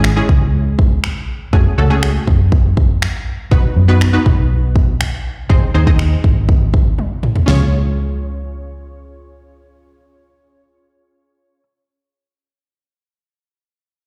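Dance-pop excerpt with a bittersweet, driving mood, built on a punchy, full-bodied sawtooth chord stab with a detuned pulse-wave filter pluck and chorus, pumping against a dark, foam-muted vintage fingered electric bass that sits round and up front. An electronic, layered pop drum kit with a fat snare, punchy kick, toms and finger snaps drives the first part, ending with a fill at 7.0 seconds and dropping out at 7.6 seconds as the chords move from C#m through F#madd9, B and G# to a C# major lift. Large studio reverb gives the sound the feel of a big system playing in a bare room.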